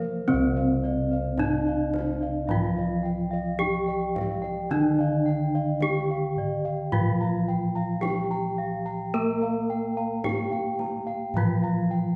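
A wet, hall-like reverb surrounds this short cut from a longer Javanese gamelan piece, giving its steady, straight-felt pulse a shimmering, ceremonial air. Up front, a bronze metallophone struck with a horn mallet carries the melody in a bright, ringing voice, its paired tuning producing shimmering beats. Beneath it, a second metallophone played with a wooden mallet sounds the accompaniment, also close and pulsing with that same paired-tuning shimmer. High arpeggios come from bossed gongs with a round, warm, boxy tone and from a metallophone whose sound is vintage and band-limited. A dark, smooth set of bossed gongs anchors the bass, while a deep kendang, played with soft hands, sits distant in the background until it drops out at 11.6 seconds.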